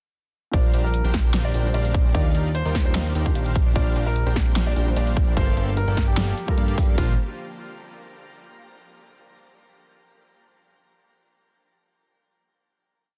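Playful and euphoric, this short future bass piece is one complete drop that runs from 0.5 seconds and settles onto a final chord at 7.0 seconds, all in a half-time feel. A warm, polished grand piano carries a repeating riff melody, while a soft, felt-muted upright piano sits in the background with spread, held chords and syncopated pushes; both pianos pump with sidechain and trail a digital delay. A huge, detuned unison supersaw plays dotted-rhythm chords in an open voicing with a touch of vibrato. Beneath these, a very quiet, breathy pad holds slow-attack chords with chorus. A fat, nasal, saturated analog bass with a plucky filter follows the chord rhythm up front, and the bass and supersaw both pump with sidechain. Two layers of an overdriven big-room electronic kit drive the groove, one giving a punchy kick with open hats, the other a massive snare with hat rolls, all set in digital ambience under a dense, heavily limited modern master.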